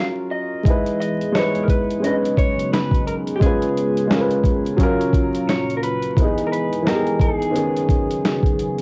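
A slightly broken-up electric guitar melody through a small old amp, softened by a low-pass filter and plate reverb, opens this dreamy, mellow lo-fi hip hop excerpt over a woody, up-front upright piano, joined at 0.6 s by a deep, detuned analog pad with chorus and slow attack, and at 0.7 s by a gritty, pitched-down boom bap sampler-style drum kit with a thumpy kick, medium-tuned snare and hi-hat on a swung feel, the whole captured as a home cassette recording with vinyl crackle and moderate studio reverb.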